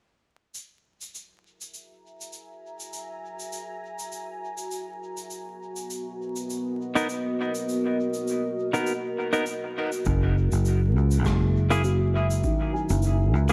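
A distant, rolled-off shaker and rim click with dub echo set a lightly swung 101 BPM ambient dub groove in F# mixolydian, spacious and peaceful, as a deep, moody, detuned sawtooth pad with chorus fades in over F#9 and Bmaj7 chords, clean hollow-body guitar stabs with dub echo arrive at 7.0 seconds, a growly, punchy fingered bass and a tape-warm electronic kick join at 10.1 seconds, and a mellow felt-muted upright piano adds boxy arpeggios through tape echo from 11.2 seconds, over a bed of vinyl crackle and light reverb in this excerpt from a longer piece.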